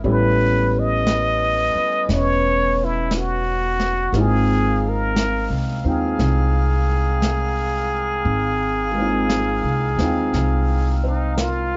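A dark, softly reverberant production frames this short cut from a tender, romantic jazz ballad in Ab major, moving at a slow 58 BPM with a swung 4/4 feel. A plunger-muted trumpet carries the melody up front from 0.1 s, its wah-wah tone bright with scooped notes and light vibrato, while a woody pizzicato upright bass and a vintage brush kit on snare and hi-hat anchor the groove. A clear baby grand piano with long sustain and a present saxophone section holding background chords fill out the harmony as it shifts from A9 to Abmaj13 at 4.1 s.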